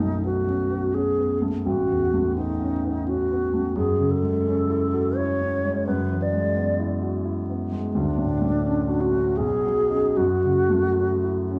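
A close-miked, airy alto flute carries the melody up front, its tongued notes shaded with vibrato, in this wistful, hazy fragment of an impressionist classical duo in F# minor. Beneath it, a dark baby grand piano with a vintage, smooth character and long sustain supplies mellow accompaniment through lush extended chords such as F#m9 and Dmaj7, moving in a rubato 3/4 at around 74-88 BPM. A wet recital-hall reverb and small-room ambience surround the pair, with a layer of vinyl crackle adding to the hazy atmosphere.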